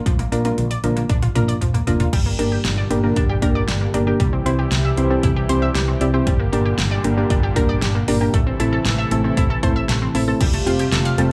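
Synth-pop at 116 BPM with a bright, upbeat mood, cut from a longer piece: a punchy, gated-reverb pop drum kit opens with a fill from 0.1 s alongside a round, dark fretless bass and a sawtooth analog pluck trailing digital delay in arpeggios, with chorused electric-piano-like synth keys joining at 0.3 s, while a smooth, detuned analog pad with tremolo enters at 2.1 s to hold sustained chords through a progression moving from Bb and Gm to a closing Fadd9 in a small booth-like room.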